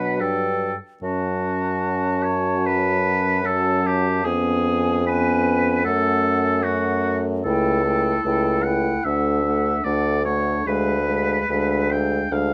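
Classical slow romantic movement for wind quintet at 75 BPM in a rubato 4/4, elegiac and yearning, where a pure, softly attacked concert flute carries the high melody from the background while a warm oboe with light vibrato sings an up-front second line, a dark, smooth clarinet and a mellow French horn fill the middle accompaniment, and a close-miked bassoon anchors the bass up front, all in light reverb captured by close, detailed microphones as the harmony moves from B minor toward a diminished chord by 10.7 seconds in this cut from a longer piece.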